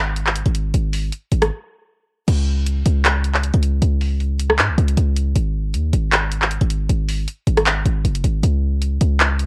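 Dry and close with a cassette-taped home-recording grit, this dark, hard-hitting trap cut from a longer piece moves at 156 BPM in a half-time feel, tuned slightly flat to A4 = 437 Hz, as a heavy, punchy sine-based 808 bass with a noise layer and fast, decaying attacks sits up front from the start, joined at 0.2 seconds by an electronic trap kit of crash cymbal, handclaps, rim clicks and bright hi-hats, before a brief break from 1.5 to 2.3 seconds opens into the longer second section.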